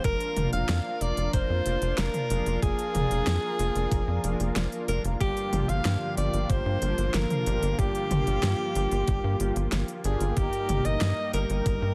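A breathy, up-front alto saxophone carries a jazz-style solo melody with vibrato and scooped notes through a digital delay in this nocturnal, driving synthwave excerpt, set over a thick, detuned pad with chorus and sidechain pumping in the background, round synth brass stabs with their own chorus, a punchy sawtooth sequencer bass, an overdriven, thumpy electronic kick, and a layered pop drum kit with a fat snare, crisp hi-hats and toms, all moving through Bb/F, Gm7 and Eb/G.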